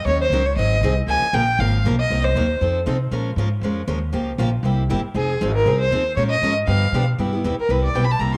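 Lively, playful jazz manouche in a brisk swung 4/4 at 236 BPM, built on a jazzy progression that moves from Ebm7 through Db6 toward a closing Cmaj7. A rich, smooth bowed violin with vibrato carries the up-front melody, pauses at 2.8 seconds, returns at 5.2 seconds and takes a solo from 7.2 seconds. Beneath it, a woody, thumpy pizzicato upright bass on gut strings and a bright picked steel-string acoustic guitar provide support, all set in a small room with a wet spring reverb.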